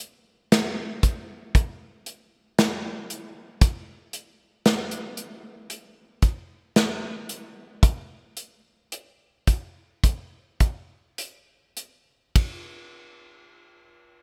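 A tender, hopeful mood carries this short pop excerpt in straight 4/4 time, cut from a longer piece. The only part is a natural country drum kit, acoustic and placed up front, playing hi-hat, kick drum, ride cymbal and snare drum from 0.5 to 12.6 seconds. Its punchy kick and medium-tuned snare sit in a small room, treated with gated reverb. The music slows down from 3.6 seconds until the first section gives way to a brief second section at 12.4 seconds. Light reverb and bright, 1980s-style digital production give the whole recording a polished sheen.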